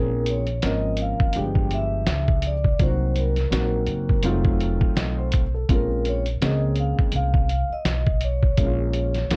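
Worn, warbling cassette tape with drifting pitch colors this dry, close-sounding cut from a longer jazz-hop track, giving it a smoky, cool mood over a swung sixteenth-note feel. A ringing vibraphone played with soft mallets carries the melody with a slow motor vibrato, while a dark concert grand piano with audible action noise plays intimate, mellow accompaniment, and a woody, pizzicato upright bass on gut strings sits up front. At 0.3 s a muffled, compressed, pitched-down sampler-style drum kit enters with a thumpy kick, medium-tuned snare and hi-hat, moving with the band through a minor progression from Bbm7 through G7b9, Cm7b5 and F7b9 back to Bbm7.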